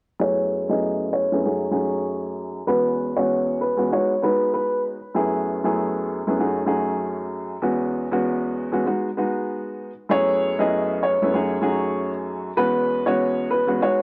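A dry, gritty hardware recording with transformer saturation, light reverb and studio ambience frames this tough hip hop cut in F# dorian, swinging at 97 BPM in 4/4 and taken from a longer piece. A dark, mellow baby grand piano with cassette tape colour and short sustain carries the accompaniment throughout, cycling F#m11, F#m69, E69 and G#m7, while a woody, boxy upright piano with long sustain and audible action noise plays the up-front melody from 0.2 to 4.8 seconds and returns at 10.1 seconds. A filter sweep runs through the opening section until the shift at 10.1 seconds.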